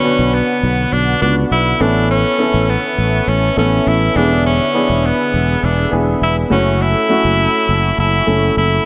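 Nostalgic and moody, this short pop fragment puts a forceful, edgy tenor saxophone up front, singing its melody with vibrato over a warm grand piano accompaniment with short sustain. A growly, round fretless electric bass with subtle chorus sits punchy and direct beneath, while a swirling, detuned analog pad, treated with phaser and chorus, holds bright sustained chords in the background. The chords move from Bm through Aadd9 and E7 to F#m7, all within a dark production and light studio reverb.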